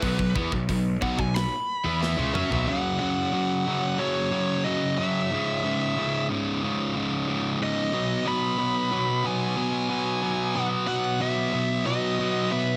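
Heavy and aggressive, this heavy metal passage at 91 BPM in 4/4 is cut from a longer piece and moves through chords of B5, F#5, C#m and back to B5. For the first 2.7 seconds the full band drives together: a tight metal drum kit with a big-room sound, medium-tuned snare and tight kick covers hi-hat, kick, snare and toms, closing with a fill from 2.0 seconds, while a growly fuzz-toned picked bass holds the low end and a scooped high-gain guitar riffs in the background. Over this, a dark, distorted high-gain lead guitar opens with a solo and carries the melody in its upper register through the whole passage. Up front, a bright, overdriven sludgy guitar riff runs from start to finish and carries the weight once the drums, bass and scooped guitar stop at 2.7 seconds. Near the end, at 11.9 seconds, a second high-gain lead line enters quietly in the background beneath the first, and studio reverb lends the mix a sense of space.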